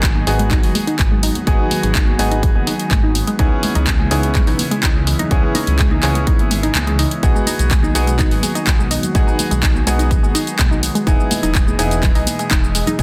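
An airy pad, a glassy wavetable pluck arpeggio under a filter sweep and dub echo, brilliant piano stabs roughened by 12-bit sampler grit, a dark detuned saw bass and a punchy layered kick open this dreamy, expansive progressive house excerpt. The pad, pluck, piano and bass pump against the kick over chords moving from G#m7 through C#m7 and B6 to Emaj7. A house kit of cabasa, handclaps and hats plays alongside the kick in studio reverb from the start, very quiet congas enter at 0.2 s, and the kick drops out briefly from 6.8 to 7.2 s within a dense, heavily limited master.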